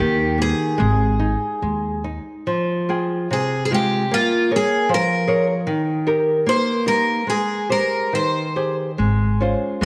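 Longing and mournful, this fado-style ballad moves in a free, rubato two-beat pulse, cut from a longer piece. A picked twelve-string acoustic guitar carries the melody up front, its shimmering, octave-doubled tone marked by audible finger squeaks and a short slapback echo. Beneath it, a fingerpicked nylon-string guitar with old strings gives a woody, intimate accompaniment across a broad range. A pizzicato upright bass on steel strings anchors the opening, drops out at 2.2 seconds and returns at 9.0 seconds. The harmony sets out from Eb5 and Ab5, then moves into Fmadd9 and on through Bbm7, Eb and Abmaj7 before settling on Dbmaj7/Ab. A lush echo-chamber reverb with a long tail lends the close, up-front parts an auditorium-like glow.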